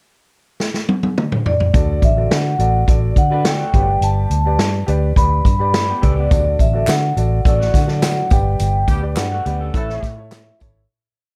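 The recording has a dark, warm studio sound with light reverb and a sense of room around the players. This joyful, danceable piece is uptempo 1960s-style soul, opening with a drum fill from 0.6 seconds as a pickup into the groove. The kit sits up front with a boomy kick, a medium-tuned snare and a rolled-off top, driving a backbeat soul groove. A foam-muted, round and punchy electric bass plays a melodic, syncopated line with slides and chromatic approach notes. An upright piano adds woody, close-voiced rhythmic chords with grace notes, while a vibraphone carries the motif-based melody with a metallic ring and slow motor vibrato. From 3.3 seconds a slightly broken-up, twangy electric guitar slips in short fills in sixths. From 6.3 seconds tambourine and handclaps mark the backbeat in the background, and a mellow horn section with light vibrato enters at 8.9 seconds for punches at phrase ends as the band accents and the piece fades out.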